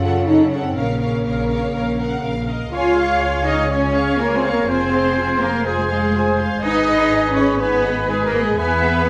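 The straight 4/4 pulse moves with steady purpose in this determined, adventurous passage from a heroic adventure film score, cut from a longer piece. From the start, bowed strings carry the music: one violin section holds the melody with light vibrato in the background while a second, lush and expressive, sings a line above it, the rich violas fill in accompaniment, and rich cellos and soft-attacked double basses anchor the bass. Dark French horns sustain chords from a distance, sounding roomy and set back. At 2.7 s the harmony settles onto the home chord and the woodwinds and brass join: a clear oboe, a very quiet airy flute ensemble with rolled-off highs, and a faint, distant clarinet each add a second line, while a mellow trumpet punctuates with stabs. The chords wander through minor colours before landing on an unexpected E at the close, and a moderate recital hall reverb gives the ensemble a natural sense of space.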